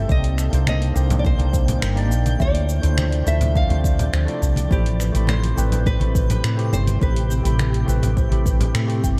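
Wistful and smooth, this short sunset chillout cut moves at 104 BPM in A minor, with a fingerpicked nylon-string guitar carrying the melody over a barky, slightly out-of-tune tine electric piano through analog delay and a shimmering, ethereal ambient pad drifting behind on chords of Cm9, Dm9 and Am9. A round, punchy fretless electric bass sits up front beside a deep electronic kick, while a tape-warm deep house kit of cabasa, finger snaps and hi-hat, very quiet congas from 0.7 s, and woody kalimba arpeggios fill out the groove. A twinkling granular texture sparkles faintly in the background, the guitar drops out at 7.6 s, and light reverb gives the whole a soft, close space.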